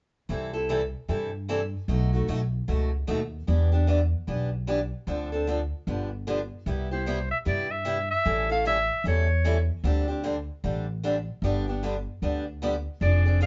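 Acoustic string swing in the jazz manouche style, lively and swinging, with a boxy, picked steel-string guitar showing finger squeak and a growly, woody pizzicato upright bass carrying the band from the start, joined at 6.9 seconds by a bright, subtone clarinet with light vibrato playing a jazz solo, all heard up front in a single room with light reverb.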